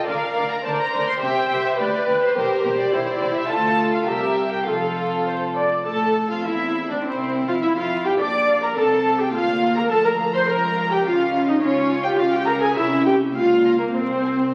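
A quick, restless and dramatic classical-period movement for string orchestra in F major at 104 BPM in 2/4, cut from a longer piece, where a distant, woody violin section carries the melody over a floating second violin line, a dark, lush viola accompaniment sitting up front, and warm cello and double bass holding the bass, all bowed sul tasto in a wet recital hall with the crackle of a very old 78 rpm record, its harmony turning through a colourful Db6 at 10.5 seconds before the chords fall away at 13.9 seconds.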